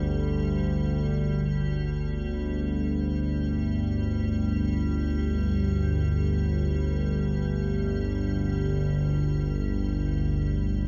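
Cavernous and ominous, this dark ambient drone drifts in free time across a short excerpt lasting 10.9 seconds. An analog drone sits up front in the low register, from G1 to D2, its sawtooth and pulse-wave tones shaped by pulse-width modulation into an evolving, warm hum with a slow attack, long sustain, long release and a touch of chorus. Above it, an icy glass pad spans G3 to G4, mixed much lower: crystalline sine tones in detuned unison, edged with a breathy noise layer, a bright, airy sheen, chorus and its own built-in reverb. Both parts hold a single G5 chord throughout, and the pad fades out across the full length of the clip. A wet cathedral reverb with a 5.1-second decay sets everything in a vast, echoing space, deepening the sense of a huge, shadowed hall.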